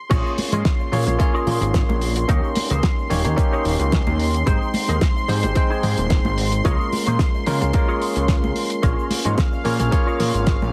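A lush, detuned unison pad with chorus opens this sleek, groovy nu-disco excerpt, sustaining chords that pump with the sidechain, and almost at once a punchy electronic kick, a thick sawtooth analog bass with a filter sweep, and a damped 70s drum kit of dry snare, hi-hat, shaker and crash drive the drop, with soft-handed congas entering in the background at 0.4 seconds. Over them a bell-like tine electric piano plays accompaniment with tape echo and sidechain pumping, while a twangy, picked electric guitar through an envelope filter, ensemble chorus and tape echo carries a riff. The mix sits in a small room with a heavily compressed, radio-like sound.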